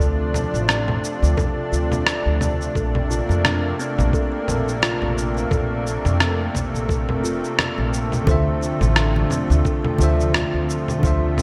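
Smooth and warm, this sunset chillout excerpt in D minor moves at 87 BPM with a light 16th-note swing, drifting from Dm7 to Bbmaj9 and back under a thick, detuned sawtooth unison pad with chorus and a mellow, hollow kalimba arpeggio with delay tucked in the background. A woody pizzicato upright bass anchors the low end alongside gritty, sampler-style shaker, congas and rim click with gated reverb, joined at 1.4 s by a thumpy, compressed electronic kick. At 8.2 s a bright, clean tine electric piano with delay enters, and very quiet hard-hand acoustic congas follow at 8.3 s, all set in a lush hall with a glossy 1980s-style digital sheen.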